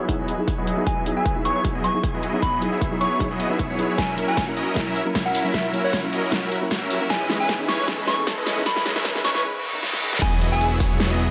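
Lush and bright, this future bass passage, cut from a longer piece, spends its first 10.2 seconds in a half-time, lightly swung build-up, with huge detuned supersaw chords up front under a filter sweep, veiled muted strings, a soft round pluck in the background and a keys-like, warbling FM lead that is also filtered. A big-room dance kit with a huge snare and metallic hats, plus a punchy layered kick, drives drum fills toward a very quiet riser and reverse cymbal. At 10.2 seconds the drop lands back on Emaj9 as a fat, thick sawtooth bass enters, all bathed in a long shimmer reverb.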